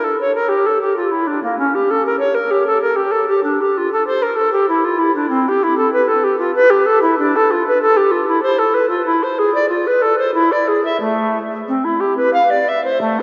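The rhythm moves freely in a rubato 3/4, hovering between 86 and 98 BPM so the pulse breathes rather than marches. This is a baroque-style classical fantasia for unaccompanied bass recorder, introspective and flowing in mood, beginning in D minor and turning to A minor at 5.3 s. The bass recorder plays solo from 0.0 to 13.2 s across a range from A3 to F5, its wooden, airy voice carrying a straight tone with a clear chiff on its tongued notes. The instrument sits up front yet is expressive, wrapped in a wet cathedral reverb with a 4.2 s decay that lets every phrase linger in the space. The passage is cut from a longer piece.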